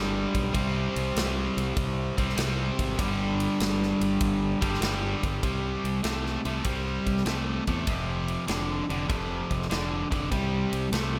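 Blues rock power trio with a southern rock edge, this heavy, brooding passage moves at 98 BPM in 4/4 with a swung eighth-note feel, cycling through C5, G5 and F5 power chords. A biting, overdriven, double-tracked electric guitar sits up front playing the riff, underpinned by a fingered electric bass with a bright, direct tone. A big acoustic rock kit enters at 0.3 seconds with a natural, roomy sound, a tight kick, a medium-tuned snare and ride cymbal, all set in a moderately reverberant large studio space.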